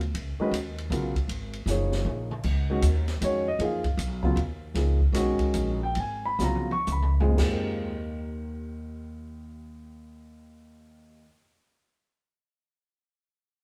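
A woody, growly upright bass sits up front from the first moment, anchoring this brief modal jazz excerpt in a lilting swung 3/4 with an open, spiritual mood. A grand piano with short sustain joins at 0.4 seconds, voicing a suspended Db chord that hangs in the air before the harmony moves to Eb at 7.4 seconds. An acoustic drum kit with dark cymbals, a high-tuned snare and a boomy kick plays two fills, the second arriving as the band slows down between 4.8 and 7.4 seconds. The drums stop at 7.6 seconds, leaving bass and piano to carry the final moments. Light reverb gives the feel of a band playing live together in one room.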